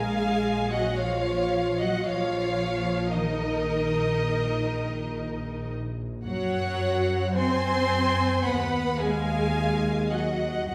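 Classical, a slow, melancholic and elegiac romantic movement for string orchestra, cut from a longer piece and unfolding with rubato in 4/4. A lush, focused violin section carries the melody with vibrato over a second violin line, while violas in a close, warm voicing fill the accompaniment. Beneath them, distant, even cellos and an intense, up-front double bass section with a clear, smooth top share the bass, all bowed ensembles set in a wet recital hall and heard from further back in the room.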